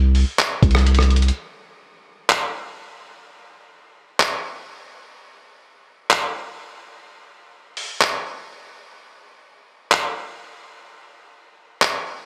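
Dry and up front, this spacious, hazy cloud-rap fragment at 126 BPM in a half-time feel opens with a deep, mellow sine 808-style bass with a fast attack that decays by 1.3 seconds, while a muffled, compressed lo-fi sampler-style drum kit re-recorded in a large room carries on with a thumpy kick, hi-hat, handclaps and rim click until 11.9 seconds, pausing for a brief break at 8.5 seconds.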